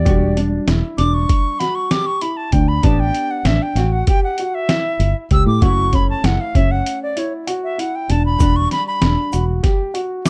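Driving along in 9/8 at 194 BPM counted in eighths, this tense progressive instrumental in E dorian moves through Em7, A9sus4 and F#m7 before returning to Em7, in a clip cut from a longer piece. A reedy wooden flute carries the melody as a solo throughout, up front with a crisp attack, vibrato and a touch of plate reverb. Beneath it, a fingered electric bass sounds round and foam-muted, while a lo-fi sampler-style kit brings a thumpy kick, fat snare and hi-hat with a compressed, muffled character, as if re-recorded in a small room. A mellow baby grand piano plays intimate arpeggios with audible action noise and short sustain, and a double-tracked hollow-body archtop guitar adds clean, picked accompaniment in the background. The kick and snare drop out from 7.5 to 8.4 seconds, and at 8.4 seconds a grainy tube shaker enters quietly behind the band. The bass then stops at 9.6 seconds, all within a dark, lightly reverberant production.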